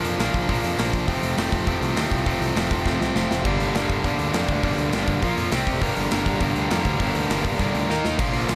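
A straight 4/4 pulse at 203 BPM drives this angry, raw punk rock excerpt in G minor: a big acoustic rock kit with bright cymbals, a medium-tuned snare and a punchy kick plays throughout, with fills around 2.9 and 7.9 seconds. An overdriven, up-front electric guitar riff sits over a growly, fuzz-laden picked bass, and at 3.4 seconds a second distorted guitar, compressed and scooped, joins in the background. The chords move from Bb and F to G minor, then through Bb5, C5 and Eb5 power chords, all in a dry sound.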